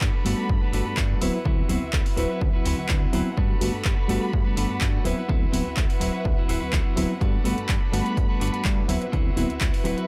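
A straight 4/4 groove at 125 BPM drives this filtered disco house cut in G major, with a punchy electronic kick sitting up front and an overdriven analog drum machine adding handclaps and hi-hats, both re-recorded in a large room. Underneath, a fat analog bass built from detuned sawtooth, square and triangle tones carries tube saturation, ring modulation and a filter sweep, while sidechain pumping and a low-pass filter shape its sound. A clean, scooped electric guitar riff and a reedy, worn electric piano, slightly out of tune and treated with a phaser and 12-bit sampler grit, fill the middle, the piano entering at 0.2 seconds. Lush bowed strings with soft attack and expressive vibrato hold sustained chords above, their sampler grit and pumping low-pass filter giving the sunny, funky mood a hazy lift. The harmony simply alternates between Gmaj9 and D13 through this short excerpt from a longer piece, all set in a digital ambience.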